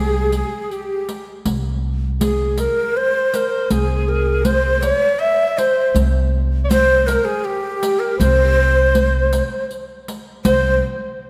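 Persian modal ensemble music in C dastgah homayun, festive and passionate at 80 BPM in a straight 3/4, where a hollow, breathy ney carries the melody up front with vibrato and crisp attacks, a close-miked alto saxophone adds a jazz-style second line of subtone and scooped notes, a dark, woody pizzicato upright bass holds C2, and a soft-handed riq with bright jingles enters at 0.3 s, all set in a moderate concert hall reverb in this 10.8-second cut from a longer piece.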